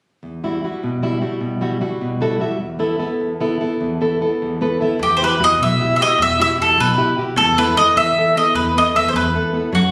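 Wistful and passionate, this Italian folk serenade sways in 6/8 at 101 BPM in E harmonic minor, opening with a fingerpicked flamenco guitar, up front and warm, moving between Emadd9 and Asus2/E, with nylon-string fills at 2.0 and 4.4 seconds. At 5.0 seconds a round, double-strung mandolin takes the picked melody up front, while a dark, woody pizzicato upright bass on gut strings adds a thumpy low line beneath. The phone-recorded sound sits in a modest small-room reverb, and the piece is cut from a longer work.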